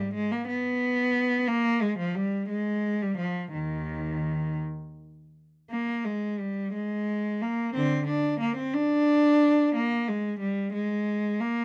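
A dark, softly reverberant recording places a single bowed cello up front, its tone clear and focused with vibrato. This brief baroque-style suite movement for unaccompanied cello unfolds in 6/8 with flexible rubato, its solemn, introspective line ranging from the instrument's deep low register into its tenor voice. The phrase turns toward new material at 5.7 seconds before breaking off at 11.6 seconds, as if cut from a longer piece.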